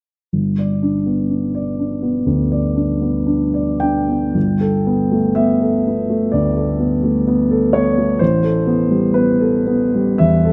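A solo concert grand piano carries this dreamy, luminous impressionist classical fragment in G major, tuned to A4 = 441 Hz and unfolding in a slow, rubato 4/4 around 52-64 BPM. Placed up front, the piano has a warm tone and deep bass across a range from G1 to G5, set in a moderate concert-hall reverb of 2.0 s within a dark production. The harmony rests on G before opening to Gadd9 at 4.4 s and Am9 at 8.2 s, and the passage is cut off at 10.5 s.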